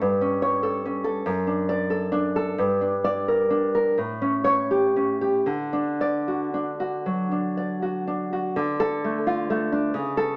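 A dark, thumb-plucked nylon-string guitar sits up front in this tender, nostalgic romantic piece for solo classical guitar, moving in a rubato 6/8 through A7/G, D/F#, Gm and A7 before settling on D. At 8.6 seconds a new section opens on a turn to Dm, and the short extract ends at 10.4 seconds. A moderate scoring-stage reverb surrounds the playing, though the whole has a small-speaker sound.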